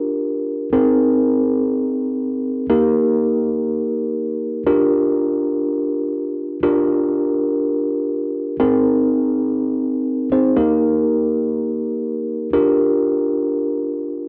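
Played in free time, this nostalgic, wistful pop excerpt features a solo tine electric piano, worn and slightly out of tune yet clean and up front, cycling through Bb6, Abadd9 and Eb chords with a cassette-tape tint and a wet spring reverb that give it the hazy intimacy of a home recording, its second section arriving at 4.7 seconds.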